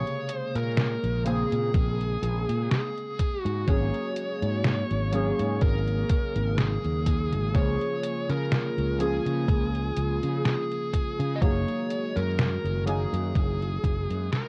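Woozy and nostalgic, this slow vaporwave cut sits at 62 BPM in Db major with a light 16th-note swing, drifting through Bbm9, Ab9sus4, Db6 and Gb69 chords over worn, warbling cassette tape with little reverb. A dark, overdriven lead guitar carries the picked melody with tape echo, while mellow square-and-sawtooth synth keys with lush chorus and 12-bit sampler grit supply the accompaniment, and a detuned, slow-attack pad holds sustained chords in the background. Underneath, a growly, punchy fretless electric bass and a tape-warm 8-bit drum machine of hi-hat and snare sit up front, joined by a thumpy electronic kick from 1.7 seconds, before the excerpt fades out from 12.7 seconds.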